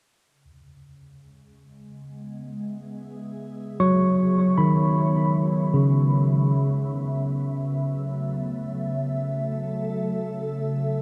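Awash in a huge, dark reverb, this reflective, spacious ambient fragment in free time opens with a glassy, ethereal FM pad fading in under chorus and phaser from 0.8 seconds, holding sustained chords that move from C#m7 to A6, before a clean, up-front tine electric piano enters at 3.8 seconds with arpeggios trailing into a diffuse delay.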